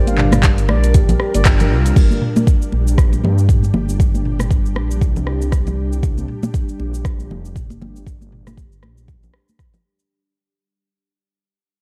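An airy, ethereal pad holds a G minor chord from the opening as a handpan rings out meditative arpeggios through sampler grit and tape echo, with a deep, detuned saw bass rumbling beneath, all three pumping under sidechain compression. This earthy, driving afro house cut moves at 118 BPM in 4/4 with a 57% swing on the sixteenths, and the handpan falls away at 1.9 seconds after a band accent at 1.5 seconds. An afro-pop kit with dark hats, handclaps, rim clicks, shaker, toms and crash sits in studio reverb, joined by close, dry congas struck with hard hands and a deep, up-front electronic kick. From 2.0 seconds the pad, mellow and chorused in its own reverb, undergoes a filter sweep while the whole piece fades out to its end at 10.1 seconds. The sound is dry and gritty, a hardware-style recording with a saturated, beating bass low end that was cut from a longer piece.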